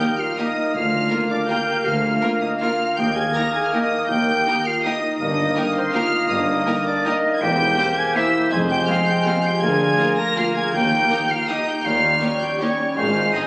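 A sweeping, elegant classical orchestral passage in Eb major and 3/4 opens at once, with a lush studio violin section singing the high melody over an uneven, rubato pulse at 162 BPM. It is supported by an airy flute, a bright, vintage-toned clarinet, a smooth cor anglais, a very quiet chamber violin section and a focused viola section, with a soft-attacked bassoon, mellow French horns holding chords and a ringing, thumb-plucked harp in arpeggios. From 0.7 seconds a dark, woody cello section, a clear double bass section and a distant tuba form the bass, and faint timpani touches on Eb sound around 3.0 and 10.7 seconds, all in a reverberant scoring-stage space with a roomy phone-in-the-room character.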